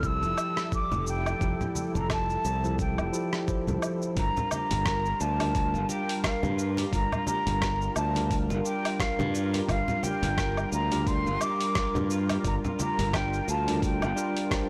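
Swung sixteenths at 87 BPM in 4/4 carry this wistful, relaxed sunset chillout excerpt in G dorian, where a gritty, overdriven sampler-style kit of hi-hat, rim click, shaker and woodblock sits over a thumpy electronic kick, hard-hand congas join at 0.9 seconds, a growly, up-front fingered bass anchors the low end, a clean tine electric piano with delay and a thick, detuned pad with chorus and phaser hold the harmony as it moves from Fmaj9 to Gm7 at 4.2 seconds, an airy, distant flute with vibrato and delay sings the melody, and from 4.4 seconds a twangy, lo-fi guitar with lush chorus picks arpeggios in the background, all within a blown-out, overdriven recording.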